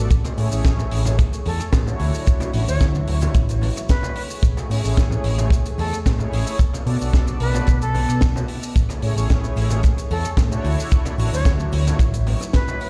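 A bright, reedy jazz flute with airy vibrato carries the melody from 1.5 seconds, tinged with tape echo, over a sunny, groovy nu-disco groove at 111 BPM in A major that moves through Amaj7, Dmaj9 and Bm7. A dry, tight kick sits up front beside a round, punchy picked electric bass with tube saturation and sidechain pumping, while a tight funk kit with a high-tuned snare, hi-hat, rim click and shaker joins ringing, distant cabasa, congas and bongos. Mellow, detuned synth brass with chorus and ring modulation plays the accompaniment over a thick, warbling unison pad that pumps in the background, all heard as if played on a big sound system in a bare room, in this fragment cut from a longer piece.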